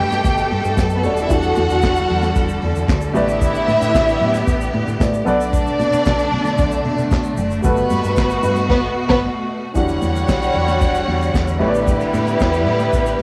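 Up-front symphonic violins with expressive vibrato and portamento carry a second line in this driving, danceable disco excerpt, over lush, intense studio strings on sustained chords, a dark, mellow baby grand piano in the background, a round, deep dub fingered bass, a vintage kit with tight kick, handclaps and dark cymbals on cassette tape, very quiet bright congas and a grainy egg shaker, with a band accent at 8.7 seconds leading into a new section at 9.8 seconds.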